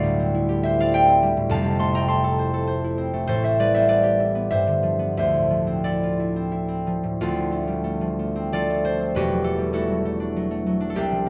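A solo concert harp, warm and ringing and set up front in light reverb, plays a dreamy, graceful classical passage in 3/4 with a rubato feel, its fingerpicked notes spanning a deep low register to bright high tones as the harmony drifts through rich extended chords like Dm11 and Fmaj7 before a new section begins at 7.2 seconds in this brief excerpt from a longer piece.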